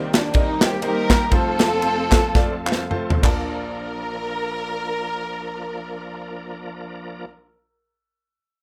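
A lush, woody string section carries the melody up front in this uptempo gospel excerpt in Bb major, its bowed vibrato sounding jubilant and reverent at once. Beneath it, a clear, natural grand piano supplies accompaniment while a bright, shouting tonewheel organ holds sustained chords through fast rotary speaker, light overdrive and chorus vibrato. A punchy, polished acoustic drum kit with a medium-tuned snare sits up front in an airy small room, joined by crisp human handclaps in the background, all in a swung 4/4 that moves between 98 and 129 BPM and slows down through the opening. Drums and piano each play a fill from 2.4 seconds as the harmony moves from Cm7 through F to Bbmaj7. The drums drop out at 3.4 seconds and the claps at 3.8 seconds, leaving strings, piano and organ to carry the rest in a moderate studio reverb with a rough home-demo mix.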